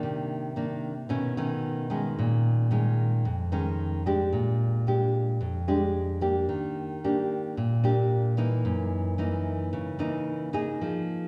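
Melancholic and smooth, this short bossa nova passage, cut from a longer piece, moves at 111 BPM in a straight 4/4 feel with its tuning set slightly below standard pitch. A lone nylon-string guitar carries the entire 11.3 seconds, fingerpicked in a classical manner and sitting up front with a warm, acoustic tone. Its harmony drifts through rich extended chords, opening on Cm9 and passing through B9, Bbm7, Bb6 and Ebmaj7 before settling on Gb13 at 8.6 seconds. The playing spans from F2 up to Ab4, covering a broad register. A wet reverb with a 1.7-second tail surrounds the guitar, lending it the spacious, resonant air of a church or concert hall.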